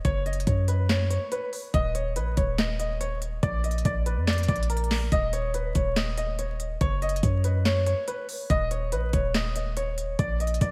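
Hard-hitting and menacing, this half-time trap beat is cut from a longer piece and runs as a single section, with every part playing together from start to finish. A concert grand piano carries the melody in a narrow upper-middle range, its warm tone given a subtle chorus and analog delay that lend it a slightly unsteady, haunted edge. Beneath it, a deep, boomy 808-style bass with a sine core, a noise layer and a fast attack that decays into a mellow tail sits up front and dominates the low end. The electronic drum kit brings a knocking kick, sharp snare, crisp hi-hats and handclaps, all overdriven and re-recorded in a small room for a gritty, up-front punch. Light reverb and digital ambience frame the mix, while a layer of vinyl crackle adds a dusty texture. The harmony circles through Gb5, Eb5 and Bb5 power voicings with a rootless Badd9/D# chord at 5.1 seconds, keeping the mood dark and tense.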